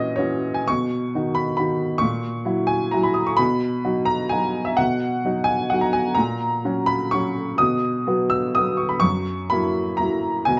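A woody, vintage-toned upright piano plays alone from the start, sitting up front in a short classical waltz fragment cut from a longer piece. Its playful, graceful phrases move in three with a rubato give-and-take, the harmony rocking back and forth between B major and its F# dominant across the piano's broad range. A wet, large studio reverb wraps the smooth piano in a roomy glow through the full 10.6 seconds.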